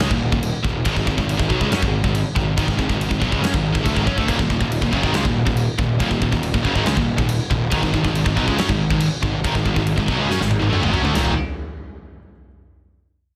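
This heavy metal clip opens with a big rock drum kit up front, its punchy kick, medium-tuned snare, toms and bright crash cymbals ringing in a natural big room, while a scooped high-gain guitar, a very quiet double-tracked thick fuzz guitar and a growly, overdriven fuzz picked bass drive an epic, aggressive riff at 140 BPM in Eb minor. At 4.3 seconds a further high-gain distorted guitar joins the background riffing, and a drum fill at 10.3 seconds leads into a new section at 11.1 seconds. The sound is dense and heavily limited with light reverb, and the piece is cut from a longer work.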